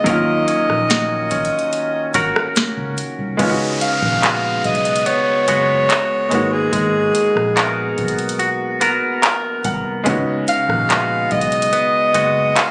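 Contemporary R&B at 72 BPM in a straight 4/4, this moody, late-night passage is cut from a longer piece and built on Ebm7, Db7sus4 and Abm9 chords. A breathy, close-miked alto saxophone carries the melody up front, its soft attack and whispered tone giving it an intimate pop character. A clear baby grand piano with short sustain plays accompaniment and adds a fill at 8.8 seconds, while a bright, twangy clean electric guitar, recorded direct and compressed, picks arpeggios up front. Underneath, a dark, foam-muted vintage bass gives round, punchy low notes, and a booming analog drum machine supplies a deep kick, tonal snare, metallic hats, rim clicks and handclaps with a dry, electronic edge. A delicate, bell-like celesta sits very quiet at the opening and again from 10.9 seconds, and an electronic downlifter runs from 3.4 to 10.1 seconds as the music moves into its second section. Light studio reverb surrounds the parts, and the recording has the slightly roomy quality of a phone capture.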